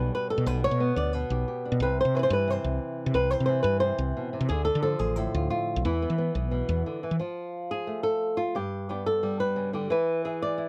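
A straight 4/4 at 178 BPM carries this intense, passionate flamenco cut, where a dark, fingerpicked acoustic flamenco guitar plays the melody up front over a round, woody fretless electric bass with a hollow-body tone that holds the low end until 7.2 seconds, after which the guitar plays alone through 10.7 seconds as the chords move from G/B through C, Dm and E5 to F, G and E, all captured with close, detailed microphones and little reverb.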